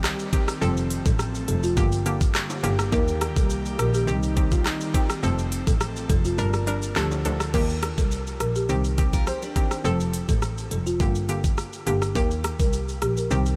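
A straight 4/4 dancehall groove of knocking kick, crisp hats, handclaps and rim clicks drives this sultry, hypnotic clip, where a bowed double bass with portamento sits up front beneath a bouncy, hollow square-wave pluck, a woody, dry marimba melody with delay, an airy pad that drops out at 7.5 seconds, faint tube shaker and timbales, a brief breathy flute-like synth line and a short picked acoustic guitar arpeggio near 9.1 seconds, all in light studio reverb.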